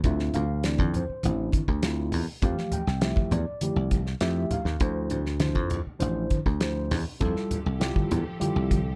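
Bright and soaring, this short slice of electric jazz fusion rides a straight 4/4 groove over alternating Dm9 and Fmaj9 chords. A mellow tine electric piano carries the harmony through a lush chorus, while a thumbed slap bass sits up front, punchy and foam-muted. The damped 70s drum kit has a fat snare, a tight kick and a rolled-off top. Low-tuned congas with a thick skin sit distant in the background. At 7.2 s a studio string section enters with smooth, bowed sustained chords touched by vibrato. The mix carries little reverb, keeping the sound close.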